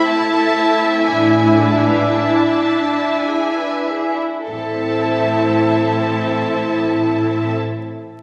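Lush, up-front violas accompany this yearning, solemn classical excerpt for string orchestra in a rubato triple metre, with a focused second violin line beneath an intimate, high melody that the first violins play sul tasto with light vibrato; expressive cellos and dark double basses enter with portamento at 1.1 s as the opening slows down, and the whole ensemble sits in a recital-hall reverb with a vinyl crackle.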